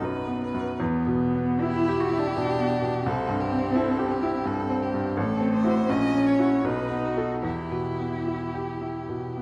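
Elegiac and yearning, this slow romantic piano trio movement in E minor unfolds in 3/4 at 71-87 BPM with a supple rubato, its harmony moving from B through E minor and C to a B7 that resolves home to E minor. A bright, up-front baby grand piano carries the accompaniment with audible action noise, while a rich, focused violin sings the bowed melody with vibrato, sitting somewhat lower in the mix. A smooth, distant cello joins at 0.8 s with a bowed second line, all set in a wet recital-hall reverb with a dark, warm production.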